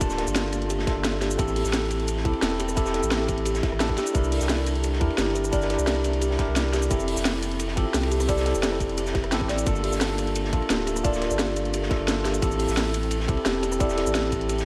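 Soulful and melancholic, this liquid drum and bass excerpt moves at 174 BPM in G dorian, with a clean, up-front tine electric piano carrying the chords through a vintage 12-bit sampler grit and analog delay while a soft, woody kalimba rings out arpeggios in the background through a diffuse ambient delay. A deep, round sine sub bass sits up front beneath a layered drum sound: a tight electronic kick, a produced kit with a cracking snare, cabasa, hi-hat and rim click, and a dark, gritty, saturated breakbeat kit with dark cymbals, a rolled-off top and a medium-tuned snare. The dreamy mix is soaked in a lush hall reverb as the harmony cycles from Gm9 through Am7, C9 and Fmaj9.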